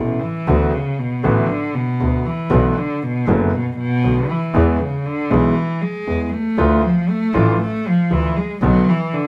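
A rubato tango pulse in 4/4 around 118 BPM sets a passionate, tense mood in this short clip cut from a longer piece. A single bowed cello takes a solo from the start until 9.3 seconds, played sul tasto with a soft attack, light vibrato and an airy bow, sitting close and up front in an intimate sound. Beneath it, a concert grand piano accompanies with a smooth, vintage character, deep bass and audible action noise, also placed up front. A bowed double bass anchors the low end with a biting, earthy tone and light vibrato, and it and the piano stop at 8.8 seconds. The harmony moves from D6 through Bm7, E and Dmadd9 before returning to Bm7, and a moderate studio reverb gives the feel of a band playing live in one room.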